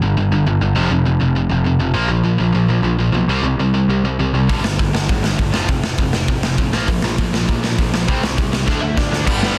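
Punk rock with a rebellious, upbeat drive, cut from a longer piece. It opens with two overdriven and distorted guitars picking a power-chord riff over a growly, up-front picked bass, and a gritty, saturated garage drum kit crashes in at 4.5 seconds with a punchy kick and a pumping stone-room sound. A drum fill arrives at 8.7 seconds as a lo-fi lead guitar through a small cranked amp and a double-tracked, compressed overdriven guitar slip in briefly, all pressed into a dense, dry, heavily limited master.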